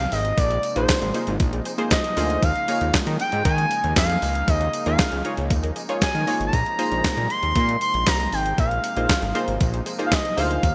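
Bright, 1980s-style digital production sits in a lush hall reverb on this danceable, feel-good snippet of early-eighties boogie funk in a straight 4/4. Up front, a crisp 8-bit drum machine with a thumpy kick, fat snare, hi-hat and handclaps carries gated reverb, joined by a jingly, band-limited tambourine tucked in the background. A thick, saturated sawtooth bass with a filter pluck anchors the low end, while a brassy analog pad with a soft-attack filter swell and vibrato holds sustained chords further back. From 0.8 s a punchy, ring-modulated polysynth comp adds funky accompaniment, while an expressive, smooth lead, present from the very start, glides with portamento and vibrato through the melody on top, both the comp and lead treated with chorus along with the pad. The harmony moves between Bb9sus4 and Eb9sus4, shifting at 2.4 s and returning at 6.5 s.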